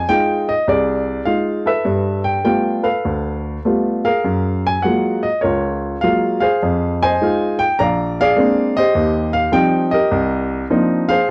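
A warm baby grand piano plays alone from the first moment in this playful, sophisticated solo jazz piece, cut from a longer work, moving with a swung, rubato feel in 4/4 across a range from Bb1 to Bb5. Its natural, short-sustained tone sits up front in a dry, close 1970s-style studio sound with light reverb, as the harmony travels from Fm7 through G9 and Gbmaj9 and back to Fm7, then through Bb9 and Eb69 to close on Cm11 by 11.3 seconds.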